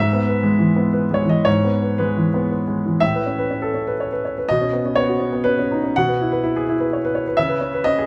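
Neoclassical minimalist piano in 3/4 and E major, peaceful and hopeful, moving with a rubato feel between 112 and 127 BPM in this brief fragment of a longer piece. A solo grand piano, smooth and vintage in tone with short sustain and sitting up front, plays from 0.0 to 8.1 seconds across a range from G#2 to F#5, drifting from E/G# through Aadd9, Badd9 and Eadd9/B to settle on C#m7. A wet studio reverb gives the sound the feel of a live room, with the harmony shifting into its second section at 3.0 seconds.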